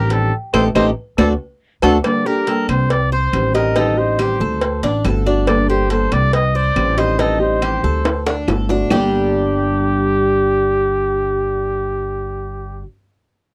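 Opening on a band accent at the start of a minor-key progression, this short, danceable, sultry cut from a longer Cuban son and guajira piece at 140 BPM sets a breathy, whispered trumpet melody with vibrato and a soft attack over bright, metallic tres arpeggios on double strings, a small fingerpicked nylon-string guitar, and a thumpy, up-front pizzicato upright bass on gut strings, while tight, high-tuned cowbell and bongos played with soft hands and distant woody claves drive the groove until a drum fill and stop at 9.0 seconds, all captured in a dry, close, vintage studio sound.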